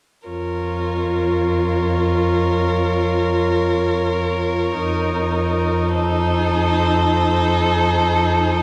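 A bowed violin with a rich, focused tone sits up front, playing a second line beneath the melody in this melancholic, solemn classical string quartet movement, which is cut from a longer, slow romantic piece. Above it, the other violin carries the melody with a clear, smooth and even vibrato, while a bowed viola fills in the accompaniment and a cello, also up front, holds a single low bass note. All four players, one to each part, sound together from 0.3 s to 8.6 s. The harmony shifts once, at 4.8 s, lending the passage a gently unresolved, searching quality. A wet recital hall reverb places the listener further back in the room, giving the quartet a spacious, reverent air.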